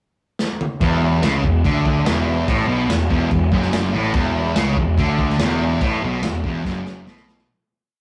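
Swaggering and rowdy, this brief garage rock piece in straight 4/4 sounds like a duo or trio tearing through a riff in a rough rehearsal room, lightly touched by reverb. The crunchy breakbeat drum kit kicks things off with a fill at 0.4 seconds, its saturated, gritty sound pushed up front with dark cymbals, a tight kick, a medium-tuned snare and toms driving a big rock groove. At 0.8 seconds a thick, double-tracked fuzz guitar crashes in on a bright, distorted single-note riff built on E5, sitting loudest in the mix. Beneath it, a growly, overdriven picked electric bass doubles the riff in the low register with a steady quarter-note figure. The piece begins fading out at 5.8 seconds, and the drums throw in another fill from 6.6 seconds as the sound dies away.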